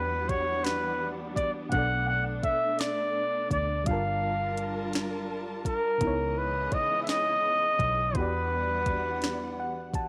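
Late-night and sultry, this slow six-eight R&B passage at 56 BPM, cut from a longer piece, sets a breathy, whispered flugelhorn melody with tape echo up front over FM electric piano with tremolo, lush bowed strings, a round, foam-muted fingered bass and a soft-kicked, sharp-snared drum kit entering at 0.3 seconds, moving through chords from Em9 to C#m9 before the electric piano adds a fill at 9.2 seconds, all in light reverb.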